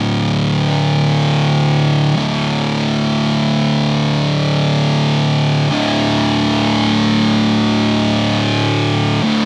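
Metal fragment, brooding and ominous, in which a lone thick, fuzz-drenched electric guitar, picked and double-tracked, sits up front in its low register for the full 9.5 seconds, hanging in a moderate large-studio reverb.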